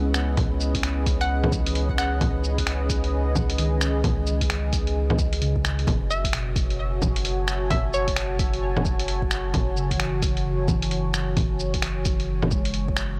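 A swung sixteenth-note groove in 4/4 drives this melancholic, ghostly future garage excerpt. An overdriven electronic kick, deep and layered, enters at 0.4 seconds beside a muffled, pitched-down sampler-style kit of bongos, cabasa, finger snaps and hi-hat that sits up front. Underneath, a round sine sub bass and a moody, detuned sawtooth pad hold the harmony, both pumping with sidechain compression, while soft, muted felt-like synth keys linger in the background with chorus, tape echo and a gritty 12-bit sampler character. A hollow, bouncy square-wave pluck with ring modulation and a filter sweep carries brief melodic phrases from 1.2 seconds and again from 6.1 seconds, trailed by tape echo. The harmony moves from C#m7 to F#m7 under a light reverb that keeps the mix shadowy and intimate.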